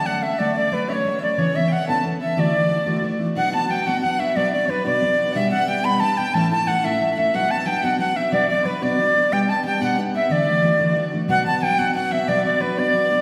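A bright, reedy wooden flute carries the melody up front in this lively Celtic jig, its airy, close-miked tone marked by vibrato and crisp tonguing. A clear, focused fiddle plays a second line alongside it, a single bowed player with light vibrato and a slightly boxy color, sitting further back in the balance. A picked steel-string acoustic guitar provides full-bodied accompaniment, with finger squeak audible and a jumbo-bodied depth. All three parts play throughout, moving through chords such as Dmaj7, Bm and G/B in a bright, dancing 6/8. The performance rings in a concert-hall space with a long, wet reverb, and this short cut is taken from a longer piece.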